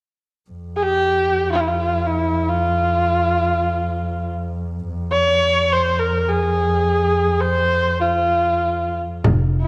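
Moderate echo-chamber reverb and a small-room ambience surround this brief excerpt from a longer Persian modal ensemble piece, its mood hypnotic and full of longing. A dark, woody double bass, bowed close by one player with vibrato, holds a low drone from 0.5 seconds. Over it, a rich kamancheh carries the melody from 0.8 seconds, smooth and even, its bowed line shaded with vibrato and portamento and set up front. At 9.2 seconds a pizzicato upright bass with steel strings sounds a deep note, while a small frame drum struck with hard hands adds a bright, acoustic accent. The kamancheh continues to sing until 9.7 seconds.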